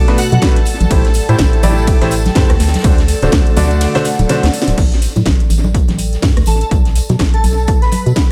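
A brilliant grand piano riff leads this soulful, bittersweet piano house at 124 BPM in A dorian until 4.4 s, over a punchy, up-front electronic kick that drops out at 3.8 s, a hollow, dark organ-like FM bass, an overdriven house kit with cracking snare and metallic hats, a very quiet acoustic vintage kit, dry hard-hand tambourine and congas, a soft-attack bowed violin section and a warbling lo-fi pad in the background, and an airy, dreamy lead that returns at 6.5 s, set in an echo-heavy small-room mix.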